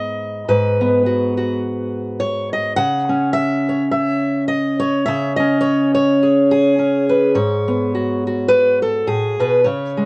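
A gently swung 4/4 lilt carries this intimate, melancholic folk excerpt, played by a lone fingerpicked steel-string acoustic guitar that moves from G#m7 to C#m and back to G#m7. The guitar sits up front with fresh strings, an auditorium-bodied tone and audible finger squeak. A moderate studio reverb surrounds it, and the sound has the worn character of old cassette tape, with warbly pitch drift.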